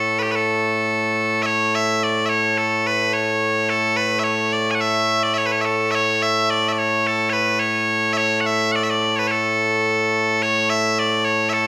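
Bright, piercing bagpipes play solo and up front in this proud, ceremonial piece of Scottish traditional pipe music, their continuous tone ringing loud in straight 4/4 time. The instrument sits in a moderate, roomy studio reverb that gives it a live, open presence, and this short cut from a longer piece moves into a new section at 1.5 seconds and carries on to 11.7 seconds.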